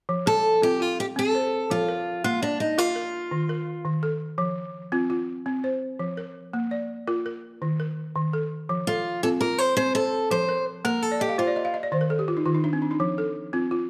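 Joyful and warm, this West African traditional excerpt in 12/8 features a woody, buzzing balafon struck with rubber mallets, playing dry, up-front arpeggios throughout, while a picked steel-string acoustic guitar carries the melody up front in two phrases beginning at 0.3 seconds and again at 8.9 seconds, with the balafon adding a fill at 11.1 seconds beneath the second phrase, all within a moderate recital-hall reverb.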